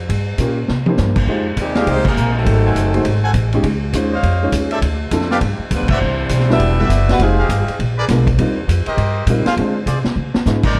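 A woody, thumpy upright bass opens this brassy, dramatic big band swing excerpt, joined almost at once by a vintage drum kit with dark cymbals and a punchy kick and by a smooth grand piano accompanying through rich jazz chords. At 1.6 seconds an edgy, tight saxophone section takes the melody over a warm trombone line in the background, returning at 5.7 seconds, while a clear trumpet section adds stabs from 1.8 seconds onward, and band accents and drum fills heighten the drama. The production is dark, set in a lightly reverberant studio room.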